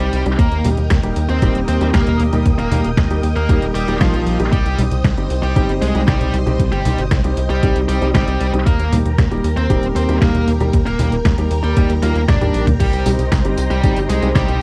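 A dry, close recording in a 1970s studio style, with little reverb and a layer of vinyl crackle, frames this melodramatic, bittersweet italo disco passage cut from a longer piece, moving at 116 BPM in a straight 4/4. A tight, punchy sequencer bass sits up front with a sawtooth and square-wave tone and a fast-attack filter pluck, driving alongside a thumpy, tape-warm electronic kick that enters at 0.4 seconds. A detuned 8-bit digital drum machine adds a fat snare, hi-hat, congas, tambourine, toms and crash cymbal, with a drum fill at 12.3 seconds. Above this, a lush string machine holds slow-attack chords with a sub octave, a moving notch and ensemble chorus, while a clear, intimate grand piano plays stabs with audible action noise. A distorted, high-gain electric lead guitar carries the picked melody, and both the guitar and the strings carry a vintage 12-bit sampler grit. The harmony alternates between Eb and Cm throughout.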